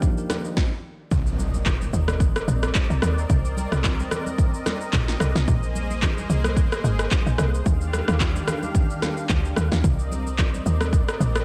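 Amapiano at 110 BPM in C minor with a deep, soulful mood, opening on a clean tine electric piano and a smooth, detuned sawtooth pad with chorus and sidechain pumping over an overdriven, gritty deep house kit of deep kick, punchy snare, handclaps, rim click and shaker plus very quiet ringing congas, then after a stop at 0.6 seconds dropping at 1.1 seconds into a tight, punchy FM log drum bass up front with an electronic impact, moving through Cm9, Bb9sus4 and Ebmaj9 chords in a dry mix.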